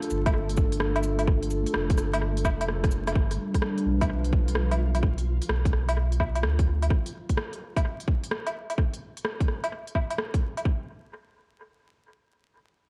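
A round, up-front sub bass anchors this wistful, nocturnal future garage excerpt, its tube saturation and sidechain pumping giving each low note a breathing weight as it runs from 0.1 to 6.9 seconds. Around it, a dark analog pad holds detuned, wave-folded chords through lush chorus and the same pumping motion, dropping out at 5.0 seconds, while a flickering, grainy granular texture sits far in the background with its own reverb. Swung garage drums bring crisp hats, cabasa, rim click and woodblock, all thrown into dub echo, and a tight, tape-warmed electronic kick punches up front until 10.8 seconds. A drum fill from 2.7 seconds and a band accent at 3.0 seconds lead into the move from Dm to G7 at 3.2 seconds, and the piece later drops to unaccompanied rhythm before the chords fall away entirely. The mix feels dry in the room yet heavy with echo, dusted throughout with vinyl crackle.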